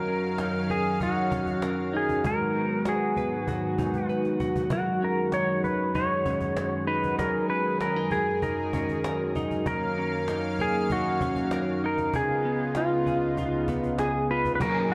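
A twangy lap steel guitar carries the melody up front with slide and volume swells, trailed by tape echo, in this ethereal, floating dream pop cut from a longer piece in F# major at 97 BPM. Beneath it a lush, detuned unison pad holds thick, airy chords with a soft attack, while a scooped, compressed clean electric guitar picks chorused arpeggios through changes such as D#m7/F#, G#m7, F#6 and C#7. A snappy cajon played with soft hands keeps time and adds a fill at 4.1 seconds, an overdriven electric guitar with harmonic tremolo enters only at 14.6 seconds, and the whole sits in a dark, warm mix with a moderate plate reverb.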